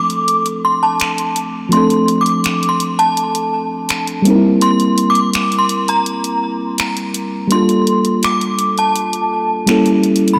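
A dreamy mix soaked in a moderate plate reverb, with a 3.4-second tail, sets a hazy space for this short contemporary R&B break, cut from a longer piece in D minor at 83 BPM. A mellow FM electric piano carries the accompaniment from the opening moment, its soft, round, full-bodied tone sitting up front with a dark edge, a faint noise layer and a gentle chorus. Above it, a synth chime plays the melody high in its register, ringing and inharmonic, colored by ensemble chorus, phaser, tremolo and tape echo. An electronic trap drum kit joins at 0.1 seconds with finger snaps and bright hi-hats, set lower in the mix with a tape-warm sheen. The harmony moves from Dm7 to C7, then Gm9, landing on a tense A7b9 near the close, giving the moody, sensual passage a lingering pull.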